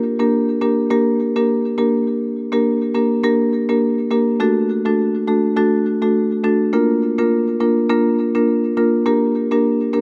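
Bouncy and sultry, this short dancehall excerpt moves at 103 BPM in 4/4 in G minor, with a gentle swing on the sixteenth notes. A lone marimba struck with medium mallets carries the whole passage from 0.0 to 10.0 seconds, sitting up front in the mix with a warm tone and staying within the range from A3 to Bb4. The harmony moves from Gm to D at 4.4 seconds, then to Bb at 6.7 seconds before returning to Gm at 9.1 seconds. A moderate plate reverb with a long tail surrounds the instrument, and the overall production is dark and warm. Cut from a longer piece, the clip feels like a fragment of a larger groove rather than a complete statement.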